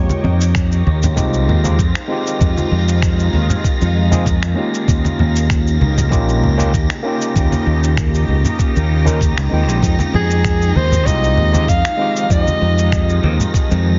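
A very quiet, mellow harp opens alongside a barky, overdriven electric piano with digital delay, a shimmering, ethereal pad with chorus and phaser, and a growly, punchy bass up front, setting a relaxed, wistful sunset chillout mood at 97 BPM in F minor with a gentle 16th-note swing over Fm7 and Eb7. Gritty, sampler-style kick, cabasa and finger snaps join low-tuned congas in the background, while an airy, wind-like noise layer sits high above. At 10.2 seconds a breathy, intimate soprano saxophone takes a brief solo with vibrato, sampler grit and delay, all within a heavily compressed, radio-like sound in this cut from a longer piece.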